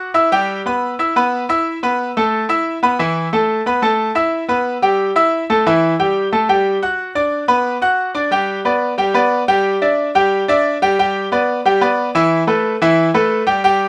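A bright, brilliant grand piano plays alone and up front in this festive, danceable Latin excerpt, its polished, long-sustaining tone ringing through a moderate studio ambience as it moves from Em and Asus2 through Bm into a second passage built around G from 8.3 seconds.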